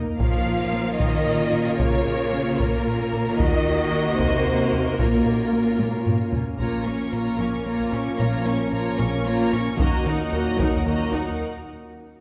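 A glassy FM pad with ensemble chorus and a rubbery, hollow square-wave bass riff open this tense, futuristic hybrid orchestral and electronic film cue in 6/8, joined almost at once by taiko drums played with heavy sticks. An expressive violin section with soft-attack vibrato carries the melody until 6.3 seconds, while a second lush violin line, a distant viola accompaniment, focused cellos in the background and a very quiet, mellow French horn section sustain the harmony, all heard from further back in a reverberant scoring stage. At 6.6 seconds a smooth-topped trombone section and clear double basses join.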